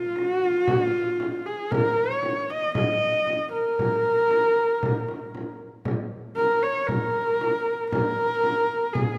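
A dark, husky horsehead fiddle sits up front, a single bowed player carrying the melody with vibrato and portamento over a small, bright frame drum heard distant in a large room, giving this short cut from a longer Mongolian folk piece a solemn, vast feel in straight 4/4 with light reverb and close, detailed sound.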